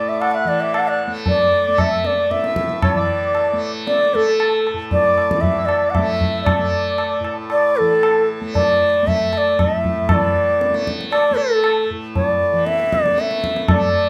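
A close-miked, airy bamboo bansuri leads this serene, meditative Hindustani classical excerpt in 7/4, its tongued, vibrato-laced melody up front over a softly plucked, buzzing tanpura drone that shimmers throughout, with a low-tuned, ringing tabla also up front and a reedy, breathing pedal harmonium tracing a second line in a boxy small room until it drops away at 8.4 seconds, all set in moderate studio reverb.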